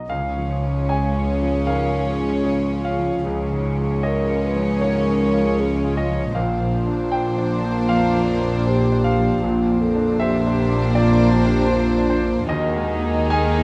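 At a slow 77 BPM in 4/4, this sorrowful, moving film-score excerpt flows with a rubato feel, tuned slightly high at A4 = 441 Hz. A clear concert grand piano with a deep bass carries the accompaniment from the opening moment, while a bright, ringing concert harp plays very quiet fingerpicked arpeggios. From 0.1 seconds the strings enter, all bowed sul tasto: a symphonic violin section sings the floating, pure melody with a soft attack, a chamber violin section adds an intimate second line with light vibrato, and a dark, woody viola section fills in very quietly. Rich double basses and a cello section sitting in the background anchor the low end. A mellow French horn section joins at 1.7 seconds with classical-style sustained chords. The harmony moves from Db to Bbadd9 and settles on Ebsus4, captured with close, detailed microphones and a light reverb.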